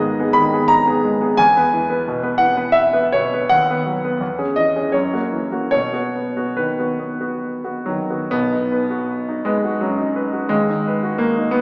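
Lyrical and hopeful, this short excerpt from a romantic character piece for solo piano moves in a rubato 3/4 between 61 and 92 BPM in B major. A clear grand piano carries everything alone from 0.0 to 11.6 seconds, ranging from B1 to B5 with a smooth, vintage tone, short sustain and an up-front placement. The harmony opens on G#m, passes through E and B/D#, then gathers through C#m/E and F#7 to settle on B at 5.7 seconds. A second section begins at 8.3 seconds, with B/D# arriving near the close. A wet recital hall reverb of about 1.9 seconds surrounds the instrument, suggesting a church or concert hall, though the overall sound is small, as if heard through a modest speaker.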